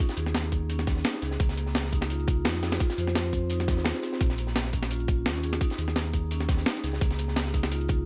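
A lightly swung 4/4 breakbeat groove drives this uplifting liquid drum and bass clip, cut from a longer piece. A tight, layered electronic kick sits up front, joined at 0.1 seconds by a gritty, compressed sampler-style breakbeat kit with hi-hat, shaker and a medium-tuned snare. Behind them, a second acoustic breakbeat kit adds dark, saturated hi-hat and high-tuned snare with a rolled-off top. From 0.2 seconds a deep, full sine sub bass with an added octave holds sustained notes up front. A metallic, ringing vibraphone played with medium mallets spins arpeggios through a tape echo in a boxy small room, tracing a warm progression that moves from Eb7sus4 to Db69, Fm7 and Bbm7 before circling back, all set in a small room ambience.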